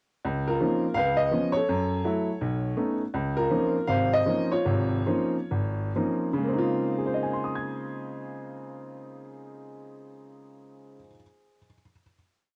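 Solo jazz piano opens this short, complete piece, playful and sophisticated in mood, with a swung feel. An upright piano carries everything, its tone clear, woody and a little boxy, with audible action noise and a long sustain that lets notes hang in the air. Short, song-like motifs ride over a stride bass and close voicings, moving through rich harmony from Dbmaj13 through Db7, Gbm7 and Cb9 before returning to Dbmaj13. The pace slows from 3.1 seconds, easing into a final chord at 6.4 seconds that holds until 10.6 seconds. Recorded at home on cassette, the piano sits up front in an intimate space with light reverb and the character of cassette tape.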